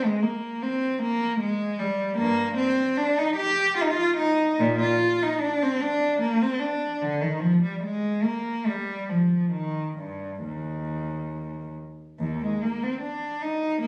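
A single bowed cello, warm and up front, opens this solemn, flowing baroque-style suite movement in Eb major, moving in a rubato 3/4 at 66-78 BPM and ranging from Eb2 to G4 with expressive vibrato, soft attacks and portamento. A new section begins at 12.2 s before the cut from the longer piece ends at 13.9 s. Captured on a phone in the room, the sound carries light club reverb and compression, with tuning set to A4 = 441 Hz.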